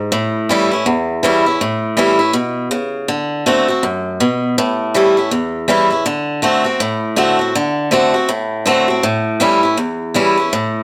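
A bright, boxy acoustic guitar, picked in a swing style, plays alone and up front for the whole 10.8 seconds of this rollicking, rowdy rock excerpt, swinging its eighth notes at a brisk 161 BPM in 4/4. Its line sits in A mixolydian and moves between A7 and D7, with the change to D7 first landing at 3.1 seconds. A light reverb gives the otherwise close guitar a touch of room.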